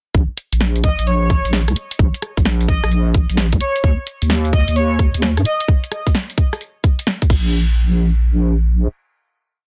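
A dense, heavily limited modern master with little reverb carries this late-night, moody two-step UK garage piece at 130 BPM in Bb minor, its 16ths swung at 65%. An overdriven, tight electronic kick and a punchy, tape-warm analog drum machine with skipping swung hats, rim clicks, snare and crash sit up front beside a deep, dark wobbling bass of square and sine tone with chorus, whose skipping syncopated line carries on until 8.9 seconds. An airy, dreamy lead with chorus, digital delay and vibrato floats short, sustained, bright phrases from 0.8 to 5.6 seconds, and the drop gives way to a final hit at 7.5 seconds.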